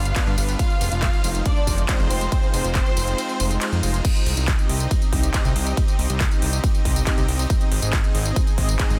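A clear, focused violin section with vibrato and delay opens this euphoric, emotional uplifting trance excerpt at 139 BPM in C harmonic minor, joined from the start by a fat, detuned sawtooth bass with a filter pluck and sidechain pumping, moving through G and Fm7 before the violins stop at 4.0 seconds. A punchy, up-front electronic kick and a layered big-room kit of crash, ride, handclaps, tambourine and metallic hi-hats, pumping against the sidechain, drive the drop, with the kick dropping out from 3.2 to 4.0 seconds. The second drop settles on Cm and then Ab over a dense, heavily limited modern master with digital ambience.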